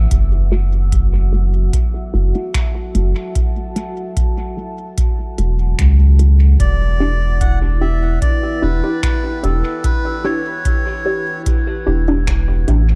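A straight 4/4 pulse at 74 BPM from a deep, tape-warm analog kick and a small-room electronic kit of finger snaps and crisp hi-hats with dub echo drives this spacious, meditative ambient dub passage in E dorian, where a round, soft sub bass sits up front beneath a moody, detuned sawtooth pad with chorus and built-in reverb, a muted, phased chord stab with dub echo carries a filter sweep over harmony moving from F#m7 to Em7, and a reedy, breathy melodica with dub echo enters at 6.6 seconds and stops at 11.4 seconds inside a dark, dry production.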